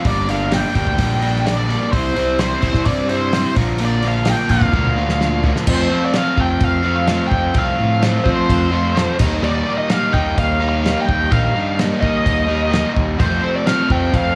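Classic rock with a driving, gritty mood, this cut from a longer piece moves at 128 BPM in a straight 4/4, tuned slightly flat to A4 = 438 Hz. A double-tracked, compressed rhythm guitar sits up front playing an overdriven, picked riff, while a fuzz-laden fingered bass growls underneath. A damped 70s acoustic kit keeps time with a tight kick, medium-tuned snare, toms, hi-hat and dark crash cymbals, its dry, rolled-off top giving it a warm character. Above them, a bluesy lead guitar carries the melody between C5 and G5 with distortion and wah. The harmony moves from Gm through C and Bb, then a drum fill from 4.7 to 5.7 seconds leads into a second passage built on F and Eb. A light small-room reverb ties the parts together.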